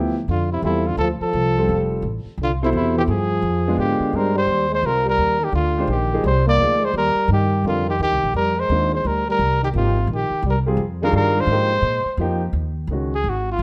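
A swinging 3/4 pulse at 171 BPM drives this intense, searching modal jazz excerpt in C minor, where a woody, thumpy pizzicato upright bass and a concert grand piano with long sustain support a mellow trumpet melody with vibrato, a breathy, close-miked trombone adds a dark second line with scooped notes, the harmony moves from Dm11 and G7b9 into Cm11, Fm11 and Ebm11, and the trumpet plays alone over the bass from 13.1 s, all in a large studio reverb.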